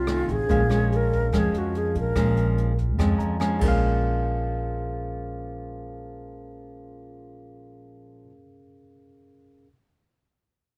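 Wistful and intimate, this bossa nova moves at 144 BPM in Bb minor, opening on a Bbm7 with an airy, hollow concert flute that carries a tongued, vibrato melody up front until 2.8 seconds. Beneath it sit bright, fingerpicked classical nylon-string guitar, woody pizzicato upright bass and a clean tine electric piano heard through a combo amp, while brushes on a small-room kit with dark cymbals and a boomy kick keep time until 3.7 seconds. The electric piano plays a fill from 3.0 seconds, and guitar, bass and piano carry on into the next section of this dry, close-sounding cut from a longer piece.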